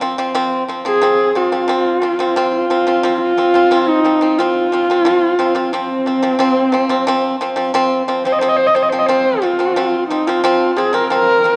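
Solemn and vast, this short cut from a longer piece is Mongolian folk music in a traditional style, moving at a steady 89 BPM in a straight 4/4 and set in the F yu mode over an F5 chord, tuned slightly sharp at A4 = 441 Hz. A pipa opens at 0.0 seconds, playing dry, percussive arpeggios with fingerpicks in a low register. At 0.9 seconds a single bowed horsehead fiddle enters up front with the melody, its horsehair strings giving a dark, husky voice shaped by expressive vibrato and portamento. The plucked pipa is also up front, lending an acoustic warmth beneath the bowed line. Both instruments sit in a moderate scoring-stage reverb, and the whole sound carries the worn character of old cassette tape, with a warbling drift in pitch.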